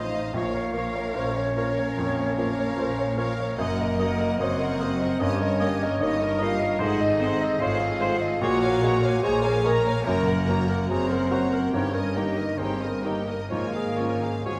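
Set in the wet reverb of a scoring stage, this 14.6-second excerpt from a longer romantic movement for piano and orchestra sounds lyrical and passionate, moving at 74 BPM in 4/4 with a rubato feel in Bb minor. A clear, polished baby grand piano carries the melody across its span and sits present at the front, joined by a dark violin section whose expressive, bowed line uses vibrato and portamento. Supporting lines come from a mellow, distant cor anglais, a rich second violin section in the background, and an airy concert flute with a soft attack. Beneath them, a very quiet bassoon and a smooth viola section fill in the accompaniment, while a roomy French horn section holds sustained chords with light vibrato. Cellos and a lush double bass section anchor the bass as the harmony moves from Bbm through Ebm/Gb, Eb7/G and Ab7b9 to Bbm7, Gb, Eb7/G once more and finally Db/Ab.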